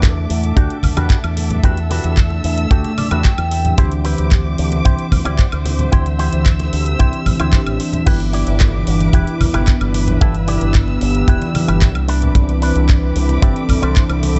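This sunny, groovy nu-disco excerpt in G major at 112 BPM opens with a dry, tight kick up front, an envelope-filtered fingered bass, a house kit of metallic hats, handclaps, woodblock and crash, and low-tuned congas sitting very quietly in a distant room. A mellow, chorused analog pad with a slow attack and a dark, bowed chamber string section with vibrato and sidechain pumping sustain chords through Em11, D9sus4, G6 and Cmaj9. Meanwhile, a compressed envelope-filtered guitar riff with tape echo weaves through the mix, briefly joined by a clean electric guitar fill from 2.7 to 3.8 seconds, all set in studio reverb with a soft, rolled-off top end.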